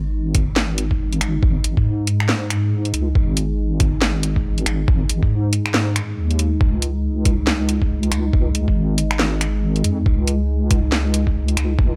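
Dry and up-front, this dark, heavy deep dubstep excerpt at 139 BPM sits in a swung half-time feel, with a gritty, pitched-down kick and a layered garage kit of cracking snare, finger snaps and hi-hat captured in a small room over a deep, square-and-sine wobble bass, while a detuned sawtooth pad with a moving notch, long release and built-in reverb sustains moody chords that shift from G#5 to C#5 at 6.6 seconds.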